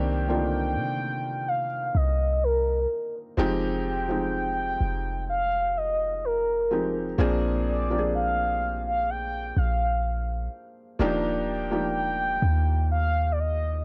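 A light reverb and the soft grain of a cassette home recording frame this short cut from a longer piece of contemporary R&B, dreamy and romantic in mood, moving at a slow 63 BPM in a straight 4/4 in Eb major. A felt-muted upright piano sits close and intimate, its soft, short-sustained chords moving through Cm7, Fm7 and Bb7 before settling on Ebmaj7 at 11.0 seconds. Beneath it, a clean 808-style bass gives a deep, boomy sine tone with a fast attack that decays into darkness, sitting up front in the mix. Entering at 0.1 seconds, a mellow horn-like synth lead carries the melody with a round sawtooth voice, a soft attack and long sustain, touched with vibrato. Chorus, phaser and tape echo on that lead add a shimmering, hazy glow to its upper-register line.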